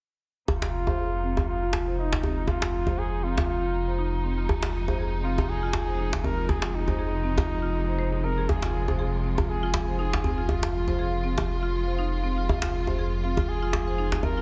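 Driving and hypnotic, this 120 BPM afro house excerpt in F minor swings its 16ths over a single Fm7 chord, with tight, cracking djembe and a deep, rumbling detuned saw bass up front, woody marimba arpeggios filtered and echoed through a sweep, rich bowed chamber strings holding chords, and a veiled bucket-muted trumpet melody with scooped notes and tape echo, all in light small-room reverb and a dense, heavily limited master.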